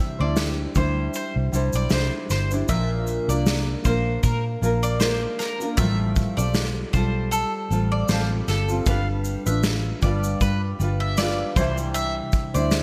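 This sunny, easy-going acoustic pop excerpt opens with a full-bodied, fingerpicked nylon-string guitar carrying the accompaniment in C major at 78 BPM, with a light swing on the sixteenths. Almost at once a bowl-back mandolin adds picked arpeggios on its double strings, touched with delay, while a vintage muted electric bass enters up front with a dark, round, foam-muted tone. The unplugged drum kit joins at 0.4 seconds, played with bundle sticks, its punchy kick, medium-tuned snare and shaker given a gated reverb. The chords move from Cadd9 through Bb, Fadd9/A and G7 before settling back on Cadd9 near 11.6 seconds. A moderate plate reverb and bright 1980s-style digital production give the whole a polished, airy sheen, with the double-tracked guitar sitting deep, classical and up front in the mix.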